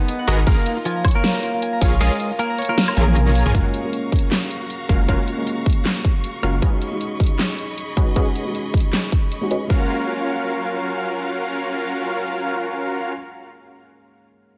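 A punchy, detuned supersaw stab drives this bright, playful future bass cut in F# major at 156 BPM with a swung half-time feel, joined by a deep saturated sub bass, a punchy kick and a dubstep kit with a huge snare, while a twangy clean electric guitar and ringing harp open the drop before a felt-muted upright piano and clear bowed strings enter at 3.5 seconds, with sidechain pumping, a filter sweep on the supersaw and chords moving from A#m7 through F#maj7 and B69.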